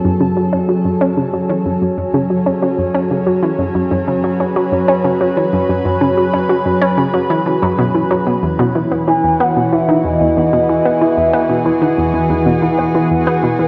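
A straight 4/4 pulse set by a round, nasal analog pluck riff with chorus and tape echo drives this expansive, hypnotic stretch of ambient, sequencer-driven space music, cut from a longer piece, as a lush, thick, detuned unison pad sustains bright chords moving from F#m to E at 8.4 s, and a smooth, expressive synth lead with vibrato and tape echo joins at 9.1 s, the whole recording steeped in a wet concert hall reverb and the warbly pitch drift of worn cassette tape.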